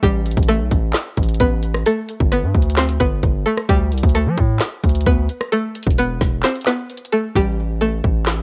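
Dark and hard-hitting, this short half-time trap clip is built on a twangy, string-like resonator pluck that carries the melody with a chorused, low-passed, tape-worn sheen, over a heavy, saturated 808-style bass with an aggressive distorted growl. The up-front electronic kit pairs a hard-clipped kick and woody snare with metallic hats, handclaps and rim clicks, all given a cassette coloring in a dry, home-recorded sound. The kick drops out from 6.4 to 7.4 seconds, and the hats fall away for the final second from 7.4 seconds as the harmony shifts.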